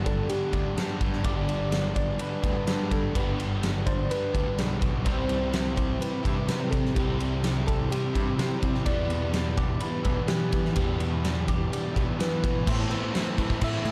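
A bed of guitars and bass opens this short excerpt of dreamy, blissful shoegaze and dream pop rock, moving at a straight 126 BPM in 4/4 in G major. A thick, dark fuzz guitar with distortion and lush chorus sits in the background beside a bright, double-tracked semi-hollow guitar and a very quiet, crunchy overdriven guitar, all three playing riffs. Behind them, a fingerpicked twelve-string acoustic guitar spins shimmering, octave-doubled arpeggios through lush chorus and tape echo, with audible finger squeak. A fuzz-laden electric bass, overdriven and direct and amped, anchors the low end, while from 0.1 seconds a huge arena drum kit sits up front with a punchy kick, fat snare, ride and crash in a big room. Also from 0.1 seconds, a soft struck FM synth lead carries the melody with a round, gentle, keys-like tone, colored by chorus, phaser, tape echo and vibrato. The chords move from G through Cmaj7 and Em7 to Am at 12.7 seconds, where a new section begins, all within a dark, warm production that uses little reverb.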